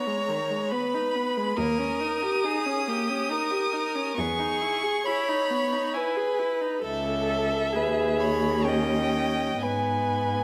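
Elegiac and yearning, this slow romantic string quartet movement in G# minor moves in 3/4 at about 67 BPM with an elastic rubato feel, its harmony passing from G#m through D#7 and Emaj7 before returning home. A rich first violin carries the smooth, vibrato-laden melody high above a clear, close second violin line and a full-bodied viola accompaniment, while a focused cello enters on the bass at 1.6 s. All four bowed players sit up front in a reverberant recital hall, and this fragment is cut from a longer piece.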